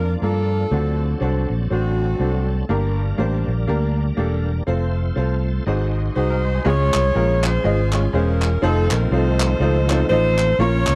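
A dry, close 1970s-style studio sound frames this jubilant, hopeful uptempo gospel excerpt at 121 BPM, swung in 4/4 and settling into Db major at 6.7 s. A tight, up-front saxophone section with jazz vibrato carries the melody, dropping out briefly before returning, over a round, dark fingered electric bass, a brilliant, woody upright piano that sounds slightly detuned, and a shouting tonewheel organ holding chords through a slow rotary speaker. A twangy, clean electric guitar adds a brief background line around 6.3 s, and crisp group handclaps in a small room join from 6.9 s.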